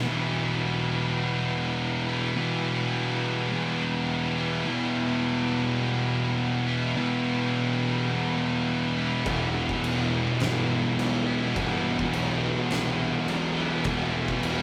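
A clean tonewheel organ holds sustained chords through a slow rotary speaker in the background, while a bright, double-tracked high-gain guitar and an up-front fuzz guitar grind out a brooding, hypnotic stoner and doom metal riff on a single minor chord, shadowed by a dark, very quiet second fuzz guitar. At 9.3 s a growly, overdriven bass and an oversized low-tuned drum kit join in the background, the kit bringing a boomy kick, fat snare, dark crashes and a gritty, pumping stone-room sound. The whole passage, cut from a longer piece, has the rough feel of a rehearsal-room recording with moderate ambience and tube saturation.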